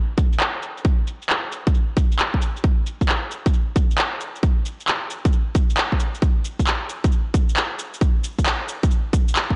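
A punchy, layered electronic kick with overdrive sits up front through this moody, bouncy UK garage excerpt at 134 BPM in 4/4 with a 67% swing on the 16ths, alongside analog-toned electronic shaker and handclaps that are low-pass filtered and also placed up front, both parts re-recorded in a large room yet leaving the overall sound fairly dry and dark, topping out at 10.7 kHz.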